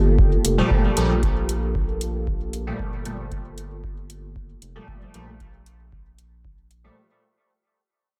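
Dub techno at 115 BPM in a straight 4/4, this short cut from a longer piece feels cavernous and hypnotic, resting on a single Gm9 chord as it fades out across its 7 seconds. A dark analog pad with a slow attack holds sustained, detuned chords with chorus and sidechain pumping, while a round, square-and-sine analog bass sits deep beneath it, also pumping to the sidechain. A deep electronic kick drum enters at 0.2 seconds, and metallic analog hi-hats follow at 0.4 seconds. The standout is a juicy, resonant polysynth playing stabs from 0.6 seconds, sitting up front with an evolving filter sweep, phaser, chorus and dub echo. Light reverb and an echo-heavy mix give the whole piece its spacious, immersive depth.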